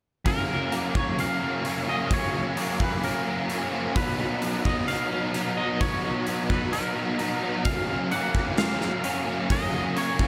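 A straight 4/4 pulse comes from a gated 80s drum kit, with a punchy kick, medium-tuned snare and hi-hat sitting up front in a bright stone room, driving this blissful, dreamy shoegaze and dream pop excerpt as it moves from F# to Bmaj7 and then F#maj7. Two biting overdriven guitars play picked riffs, one dark and touched by reverse reverb, the other warm, up front and thickened by ensemble chorus. Above them a twangy, compressed electric guitar carries a very quiet melody through tremolo and diffuse ambient delay, while a second, scooped and bright twangy guitar joins with arpeggios at 0.7 s, all bathed in a huge, reverb-soaked haze.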